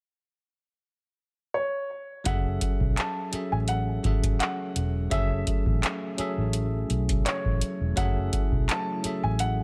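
A dark, mellow baby grand with audible action noise and a touch of digital delay opens this moody, sensual contemporary R&B excerpt at 1.5 seconds, soon joined by a bell-like, clean tine electric piano, and then at 2.3 seconds by a round, foam-muted vintage electric bass and a booming, dry analog drum machine with a deep kick, metallic hats and handclaps settling on F#m7 in F# minor at a lightly swung 84 BPM, before a very quiet, warbling, detuned ambient pad with a slow attack and chorus slips in at 4.5 seconds.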